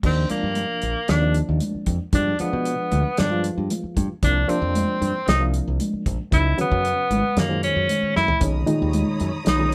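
Funky and bright, this snippet of electric jazz fusion puts a punchy, forceful tenor saxophone solo with vibrato up front over a barky, reedy electric piano with light overdrive and fast tremolo, a fingered electric bass, a dry, damped 70s drum kit that plays a fill at 8.2 seconds, thick-skinned congas in the background, and a dark, lush symphonic string section that enters at 8.4 seconds, the band heard playing live in one room with light reverb.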